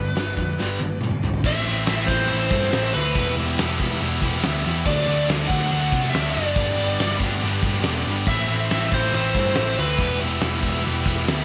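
Swaggering and brooding, this classic rock passage rides on a biting, overdriven lead guitar melody over two bright rhythm guitar riffs tucked into the background (one scooped and distorted, the other overdriven), a dark, round hollow-body bass, and a very quiet, shouting tonewheel organ with key click and slow rotary holding sustained chords, while a polished gated 80s drum kit with fat snare and tight kick sits up front, entering at 0.2 seconds and playing a fill from 0.6 to 1.4 seconds before the lead guitar stops at 10.2 seconds, the whole set in a small room with light reverb and a faint mains hum.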